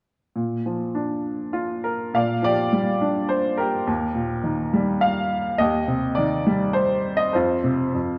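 A clear, woody upright piano enters at 0.4 s and carries this sunny, lyrical classical excerpt alone, moving through Bb major in 3/4 at around 103 BPM with a flexible rubato feel. Its smooth, vintage tone has a short sustain and sits up front, spanning Eb2 to F5 as the harmony passes from Bb and Bb6 to Eb, Cm/Eb and F5. A moderate concert hall reverb surrounds the piano in a dark, warm production, and the passage is cut from a longer piece, ending at 8.2 s.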